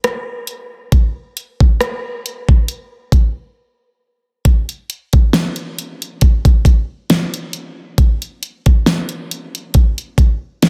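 A slow 68 BPM groove in 4/4 with a light swing on the sixteenths gives this short R&B excerpt a tender, smooth feel, carried entirely by an electronic drum kit of knocking kick, fat snare, rim click and warm hi-hats. The kit sits up front with the character of a small room, and it plays a break from 3.6 to 4.5 seconds before a new section begins. The sound is dry, dense and heavily limited in a modern way.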